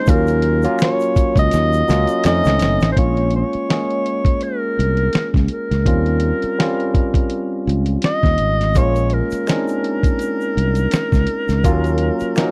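A dry, close recording with a 1970s studio feel frames this late-night, sultry stretch of neo-soul R&B, cut from a longer piece and moving at an unhurried, lightly swung pace. Up front, a clear, close-miked clarinet carries the melody in a jazz style, with vibrato, subtone and scooped notes, its line trailed by tape echo. Beneath it a barky tine electric piano, lightly overdriven through a combo amp, plays the chords, while a fingered electric bass sits warm and direct in the low end. A dusty, sampler-style drum kit, compressed and gritty with a thumpy kick and fat snare, plays a fill from 1.5 to 3.0 seconds before the harmony settles into a slow turn through minor-seventh, thirteenth and ninth chords. In the background, a saturated tube shaker with finger snaps and group handclaps appears at the start, drops out at 3.0 seconds, and returns at 8.7 seconds.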